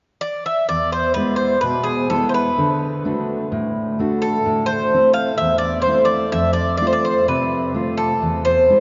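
Intense and dramatic, this Greek folk piece for bouzouki band moves at 128 BPM in E phrygian dominant, cut from a longer performance. The up-front bouzouki enters at 0.2 s with a metallic, double-strung melody that has some octave-doubled strings, and a dark, full-bodied fingerpicked jumbo steel-string guitar joins at 0.7 s to carry the accompaniment through E, D, Am and F. The recording sits in a long, wet cathedral reverb, with its highs rolled off like a performance caught in a church or concert hall.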